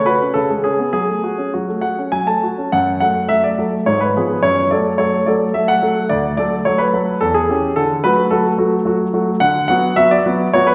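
A classical-period piano sonatina in triple time, played with a cheerful, elegant rubato on a solo grand piano whose tone sits present and up front while ranging from the low bass to the upper treble. A single high note opens the fragment before the harmony settles on F# minor, and a new section begins at 2.7 s, moving through a diminished colour toward D major and closing on B minor around 9.4 s. The piano rings in a reverberant recital hall or church, giving this short cut from a longer piece a lingering, spacious decay.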